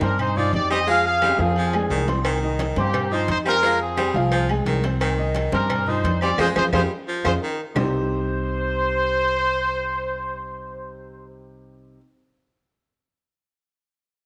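A passionate, driving salsa cut from a longer piece, moving at 174 BPM in C minor and alternating between C minor and F minor chords. A mellow, tight trumpet section carries the melody up front with light vibrato and a smooth top, while a breathy, whispered baritone saxophone adds an intimate second line until 7.9 seconds. A clear, slightly boxy baby grand piano supplies accompaniment throughout, and a dark, thumpy pizzicato upright bass sits up front with a woody tone. The percussion is layered and mostly quiet: ringing congas, distant metal-shelled agogo bells and timbales in the background, dry claves, and round, low-tuned cowbell and bongos that join at 2.2 seconds. A drum fill arrives at 1.2 seconds, and another fill with a band accent marks the close of the opening passage. The percussion drops away at 7.8 seconds, leaving the trumpets, piano and bass in a modest echo-chamber reverb with small-room ambience.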